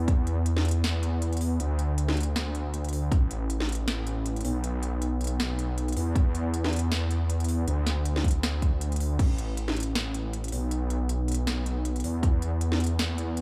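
Dry and close, with a small-room ambience, this emotional, lush future bass excerpt moves at 158 BPM in a half-time feel with a light swing on the sixteenths. Up front sits a thick detuned saw bass in chorused unison, its fast attack and sustained tone pumping against the sidechain as it holds the low end from A1 to E2. An overdriven, layered electronic kick punches in at 0.1 seconds and carries a longer run from 6.2 to 9.3 seconds, while a gritty trap kit of crash, crisp hi-hats and a sharp snare plays throughout.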